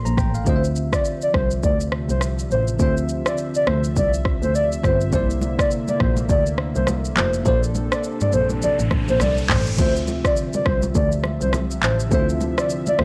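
Afrobeats at 103 BPM in D minor, this hypnotic, smooth passage is cut from a longer piece and rolls with a 16th-note swing. An electronic afro-pop drum kit with a deep kick sits up front, mixing crash cymbal, handclaps, rim click, shaker and toms, beside a dark, veiled muted double bass played bowed with vibrato by one player. A bell-like tine electric piano adds clean, direct accompaniment from the start, while a hollow, woody clarinet-like synth lead carries the melody from 0.5 seconds with soft attack, vibrato and chorus, over a lush, thick unison pad of detuned sawtooth tones held in the background. The chords move from Dm9 through C9 and Bbmaj9 before returning to Dm9, and very quiet, ringing high-tuned congas join at 5.1 seconds. An electronic riser from 8.1 to 9.8 seconds leads into the next section, all set in a dry, gritty cassette-tape sound with little reverb.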